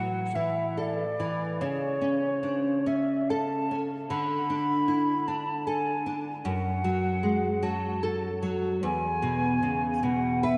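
A silver concert flute carries a lyrical melody with pure tone, vibrato and a crisp attack, sounding distant and touched with delay, in this romantic duo for flute and classical guitar in A major at 75 BPM, moving in a rubato 3/4. Up front, a bright fingerpicked nylon-string guitar supplies the accompaniment through analog chorus, its finger squeaks audible as the harmony moves from A5 through A/C#, D5 and F#madd9 to E by 8.8 seconds. A lush hall reverb soaks the whole warm mix in a dreamy wash across this short 10.6-second fragment cut from a longer piece.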